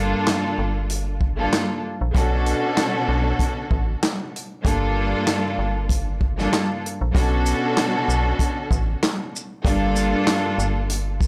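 A swung sixteenth-note groove in 4/4 drives this gritty, moody boom-bap hip-hop passage, cut from a longer piece. A vintage acoustic drum kit comes in at 0.3 seconds and sits up front, its punchy kick and medium-tuned snare joined by handclaps, hi-hat and shaker with a natural studio-room character. Beneath it, a metallic FM bass plays low notes with a fast attack and a mellow, decaying digital tone. A clear, lush string section plays bowed ensemble chords with vibrato, focused yet distant and filtered at both ends of its range, alternating between Gm9 and Bm9 harmonies. The whole take has a dry, gritty hardware sound set in a small room, and a second section begins at 7.1 seconds.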